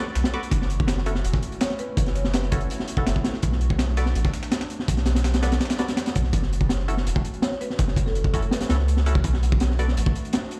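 Drum and bass with a jungle edge, this dark, frenetic excerpt runs at 165 BPM in a straight 4/4, set in F# minor and moving between Bm7 and F#m7. A crunchy breakbeat kit sits up front, its tight kick, high-tuned snare and hi-hat sounding saturated and gritty with a rolled-off top, while a second, dusty sampler-style kit of compressed hi-hat and snare, both high-pass filtered, lurks in the background until 6.3 seconds. A soft, round dub sub bass carries the low end from E1 to C#2, deep and sustained with a fast attack. Muted sawtooth chord stabs with a plucky filter decay through chorus, cassette tape colour and dub echo, and a warbling, detuned pad holds nostalgic lo-fi chords behind them with chorus and its own reverb. A mallet marimba surfaces briefly in the background, first at 1.6 seconds and again at 7.4 seconds, trailed by dub echo, all heard as if played through a big sound system in a bare room with a large studio reverb.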